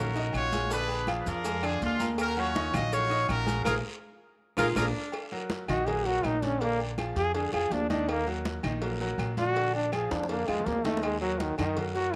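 A straight, driving salsa groove in 4/4 powers this fiery section of a longer piece, anchored by a thumpy, dark upright bass with gut strings played pizzicato up front and a bright upright piano with audible action noise and long sustain. Behind them sits a busy percussion bed: ringing congas, very quiet low-tuned cowbell and bongos, compressed and saturated metal-shell timbales with agogo bells, vintage band-limited claves, raspy guiro, and grainy maracas that drop out at 4.8 seconds. A tight, brilliant horn section carries the opening melody, the band hits an accent, and an edgy baritone saxophone with vibrato and slapback echo slips in a brief forceful line. From 5.7 seconds a punchy trombone with vibrato and slapback echo takes a solo over alternating minor and dominant chords, with a drum fill arriving at 10.1 seconds. Light studio reverb surrounds the parts.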